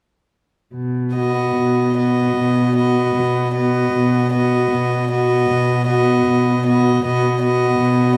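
In a gently pushed and pulled 4/4 with a rubato feel, this slow, romantic classical movement for string quartet unfolds with a tender mood, cut from a longer piece. A single bowed cello opens alone at 0.7 seconds as the up-front bass, dark and woody with vibrato and a smooth top. At 1.2 seconds the other three players join: a pure, floating violin carries the melody with a soft attack, a second violin adds a darker, close line with vibrato, and a rich viola fills in the accompaniment with light vibrato and an airy bow. All four play sul tasto, giving the ensemble a hushed, intimate quality. The close, detailed microphones and nearly dry room keep every bow stroke present and near.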